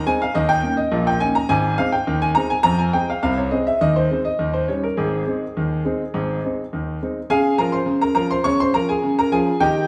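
A solo grand piano opens this jaunty, cheerful ragtime fragment, cut from a longer piece, at 104 BPM in a straight 2/4, tuned to A4 = 441 Hz and spanning Ab1 to Db6. The intimate, boxy instrument sits up front with audible action noise and long sustain, ringing in a wet stone room reverb as the harmony moves through Ab, Fm and Eb7. At 7.3 s the music turns to a new section on Bbm/Db before the fragment ends at 9.9 s.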